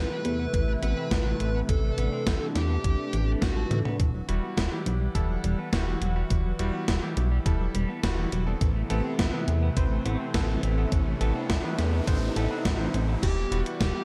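Driving and nostalgic, this 104 BPM synthwave excerpt in E minor sets a dark overdriven lead guitar over a swirling phased analog pad, a glossy, up-front chorused synth bass that pumps with the pad, clean semi-hollow electric guitar arpeggios in the background, and a gated 80s digital drum machine with a thumpy electronic kick, while a cutting electric grand piano adds stabs from 4.3 seconds, a riser enters at 7.4 seconds and a noise sweep at 10.9 seconds, and a dreamy FM electric piano with soft pad layer slips in at 13.2 seconds.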